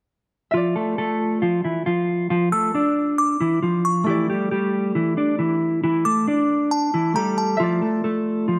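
A mellow electric guitar carries the melody up front, its dark, clean, fingered tone softened by a low-pass filter. This hard-hitting yet eerie hip hop fragment moves at 136 BPM in a half-time feel in D minor, cut from a longer piece. Beneath the guitar, a concert harp supplies acoustic, thumb-plucked accompaniment that rings with a warm, filtered glow, and both parts play from 0.5 to 8.6 seconds. At 2.5 seconds a delicate FM synth tine bell enters as a second line, tinkling and full-bodied with a fast attack, decaying tones, chorus and tape echo, before it stops at 7.6 seconds. The harmony shifts from Dmadd9 to A7sus4 and back, and a lush hall reverb with a 2.3-second decay surrounds the whole passage.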